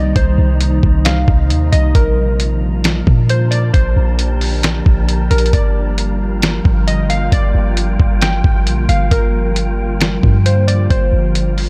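Blissful and dreamy, this atmospheric cloud-rap excerpt at 134 BPM in a half-time feel sets a warbly, detuned pluck melody with chorus and tape echo over glassy, ethereal FM pad chords moving from Cm7 to Bbmaj7 and Gm7 with ensemble chorus, reverb and sidechain pumping, while a deep, boomy 808-style bass and a muffled, tape-warm sampler drum kit with a thumpy kick and fat snare, entering at 0.2 seconds, sit up front beneath a faint, breathy wind-like noise texture in a digital ambience.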